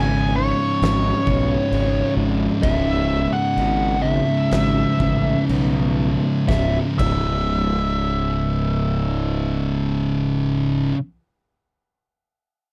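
A compressed fuzz lead guitar with wah and slapback echo carries the melody up front in this brooding, sludgy stoner and doom metal passage cut from a longer piece, over two thick, distorted fuzz guitars (one dark, one warm) picking the riff and a round, punchy fingered bass with overdrive and tube saturation, while an oversized low-tuned acoustic drum kit with a fat snare and a pumping room sound sits gritty in the background from 0.8 to 7.3 seconds, the music slowing down through its first 6.5 seconds in a dry room.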